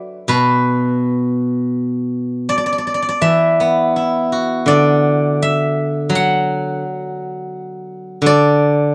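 A bright, silvery steel-string zither, played with fingerpicks and ringing up front, carries this serene, flowing solo in the Chinese traditional style, moving at about 83 BPM in 4/4 with uneven, rubato beats in the D gong mode across a range of B2 to F#5, captured in a dry, close 1970s-style studio sound in a short 8.9-second fragment cut from a longer piece.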